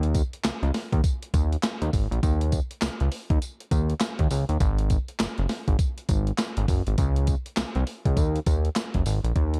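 Opening at once on a fat, detuned sawtooth analog bass with a plucky filter and a gated 80s digital drum machine (thumpy kick, gated-reverb snare, handclaps, hi-hat and tambourine), this confident, slick new jack swing R&B cut in Eb dorian struts at 101 BPM with a 16th-note swing, both parts up front in a dark, dry mix for its 9.6 seconds.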